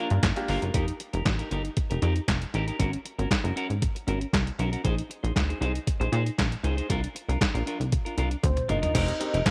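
Smooth and feel-good, this short cut from a longer early-eighties boogie funk piece rides a straight 4/4 groove built on lush suspended ninth chords. A semi-hollow electric guitar carries a clean, fingered riff across the whole passage, touched with subtle chorus, while a plucky analog bass sits up front with a punchy, funky sawtooth-and-square bite, a fast attack and a decaying tail. The detuned 8-bit drum machine brings a thumpy kick, a medium-tuned snare, hi-hat, handclaps, toms and crash cymbal, its sampler-style tone tape-warm and re-recorded in a small room, and a drum fill arrives at 8.4 seconds. A velvety, dark synth lead with a sub octave appears only briefly at the start and again from 8.4 seconds, colored by chorus, tremolo and slapback echo. A natural-sounding baby grand piano adds accompaniment at the opening and returns at 8.9 seconds, all set in light reverb and digital ambience.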